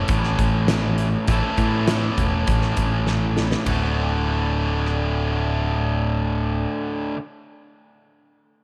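An up-front, overdriven electric guitar drives this sunny classic rock excerpt with a picked riff, backed by a growling electric bass with direct, amped overdrive. A huge arena drum kit with a fat snare, punchy kick and bright cymbals, plus hi-hat, ride and rim clicks, pushes the straight 4/4 groove, adding a fill from 3.1 to 3.7 seconds as the harmony moves from A to D. The drums drop out at 5.0 seconds, leaving guitar and bass to carry on in a small room with light reverb.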